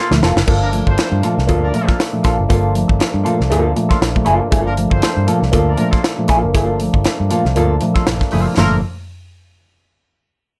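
A drum fill on a crisp, up-front fusion kit with a high-tuned snare and tight kick, together with a dark hollow-body jazz guitar with wah, opens this driving, cool funk excerpt at 118 BPM in G minor, swinging lightly on the sixteenths. A mellow tine electric piano playing stabs and a round, foam-muted fingered bass join at once, and the group settles onto a Gm9 groove, joined by a lightly overdriven tonewheel organ holding sustained chords with key click in the background. From 0.6 seconds a distant, punchy horn section with vibrato and octave doubling adds a second line, all set in light reverb.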